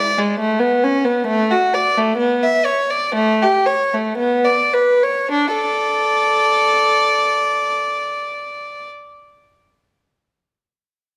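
Set in a recital hall whose reverb blooms generously around the player, this brief cut from a longer piece presents a single up-front violin with a rich, reedy gut-string tone, light vibrato and a period-style bow. The baroque-style suite movement for unaccompanied violin unfolds in a flowing, serene 4/4 with rubato, easing back through its opening 5.3 seconds as the harmony moves from a rootless dominant colour toward its home chord. The violin plays alone until 8.9 seconds, its line carrying on into a second section.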